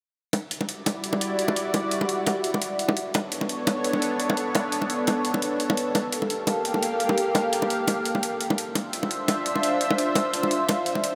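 This is a dreamy, rolling liquid drum and bass passage at 171 BPM in E dorian, cut from a longer piece, with a lightly swung 16th-note feel. It opens at 0.3 seconds with a gritty, compressed electronic hi-hat, captured in a large room, alongside round, low-tuned acoustic bongos that sit close, dry and up front, struck with hard hands. At 0.8 seconds a lush unison pad enters, thick and detuned, built from sawtooth and square waves with a slow attack, its bright sustained chords colored by chorus and phaser and placed up front. The harmony moves from Em9 through Bm9 and Gm9 to Dm9, giving the pad a drifting, dreamy shape over the percussion. The whole mix is soaked in a huge ambient reverb with a five-second tail, lending the passage a hazy, floating atmosphere until it ends around 11.2 seconds.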